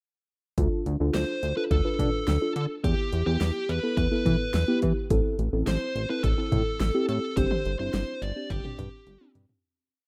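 A glossy, sequenced synth bass with a chorus sheen sits up front in this short, nostalgic and bright synth-pop piece, carried by a punchy deep house drum-machine beat with a fat snare and syncopated toms. Muted, felt-like synth keys add soft syncopated triad chords over a Dm, Em, Am and Gsus4 progression, while a dark, overdriven lead guitar with slapback echo plays hook phrases from 1.1 seconds. Light reverb colours the rough home-demo mix, which fades out from 7.4 seconds before a closing drum fill at 9.1 seconds.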